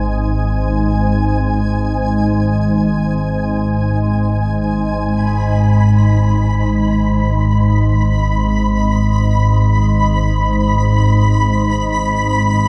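An organ-like drone in G# minor anchors this ominous, desolate ambient excerpt, sitting low and up front. It holds a sustained unison tone with a slow attack and long release, thickened by ensemble chorus and its own built-in reverb. Above it, a flickering, grainy granular texture fades in over the full 12.7 seconds, high in the register and quieter than the drone. That upper layer carries a detuned, triangle-like shimmer with slow attack, long release and its own built-in reverb. The music moves in free time over a single G# minor chord, and a huge, wet room with a 7.6-second decay wraps the whole recording in a vast, lonely space before the cut at 12.7 seconds.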